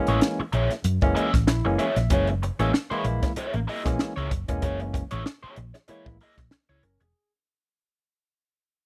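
Funk cut from a longer piece, energetic and swung, with a barky, lightly overdriven tine electric piano punching out stabs and a fill at 1.2 seconds, a dark, picked garage guitar through wah and overdrive, a round, hollow-body fingered bass, and a compact cocktail kit with a high-tuned snare and punchy kick, all captured in a dry, close 1970s-style studio sound that fades out from 2.1 seconds.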